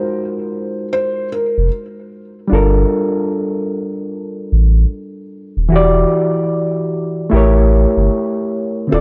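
A dark, gently reverberant small-room production frames this nostalgic, reflective lo-fi hip hop excerpt at 75 BPM in 4/4, with a 16th-note swing. A gritty, reedy overdriven electric piano, heard through a combo amp with cassette-tape character, carries the harmony throughout over G#13, Gm9, Em7 and A7b9. A soft, thick-felt upright piano with audible action noise and tape echo sings a brief, intimate melody until 1.7 seconds, while a round, deep sine sub bass enters at 1.6 seconds and sits up front.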